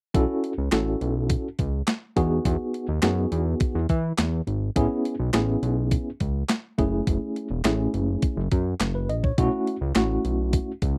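A dry, close recording with little reverb and a 1970s studio character frames this danceable, funky slice of early-eighties boogie funk at 104 BPM, cut from a longer piece. A crisp, overdriven 8-bit drum machine with a thumpy kick, medium-tuned snare, hi-hat and handclaps sits up front beside a fat, detuned analog bass blending sawtooth, square and triangle tones with ring modulation and a filter sweep. A worn, slightly out-of-tune tine electric piano played through a combo amp with fast tremolo carries the chords from B9sus4 through Emaj7, Amaj7 and F#m7 before returning to B9sus4 at 9.4 seconds.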